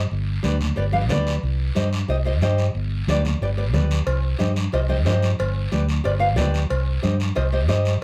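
A round, dark fingered electric bass sits up front in this driving, fiery cumbia excerpt at 182 BPM in C harmonic minor, joined by a small, fingerpicked nylon-string guitar with a fill at 0.8 seconds, a raspy, band-limited guiro, soft-handed congas in the background, and ringing metal-shell cowbell and timbales entering at 4.1 seconds, all captured closely in a dry, detailed sound as the harmony alternates between G and C minor.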